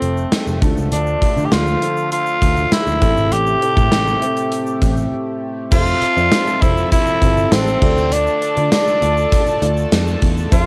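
A raspy, gritty tenor saxophone carries the melody up front in this nostalgic, moody 1980s-style pop excerpt at 100 BPM, its sound touched with cassette tape and tape echo over a dark, mellow baby grand piano, a shimmering chorused pulse-width pad in the background, a round, foam-muted picked electric bass and a polished gated drum kit with bright cymbals, tambourine and a tight kick. A grainy egg shaker sits low in the mix. After a brief break at 5.1 seconds, a very quiet, tight distorted guitar joins at 5.7 seconds as the chords move from Dm and Am7 to Fmaj7, all within a modest booth ambience that suggests a home cassette recording.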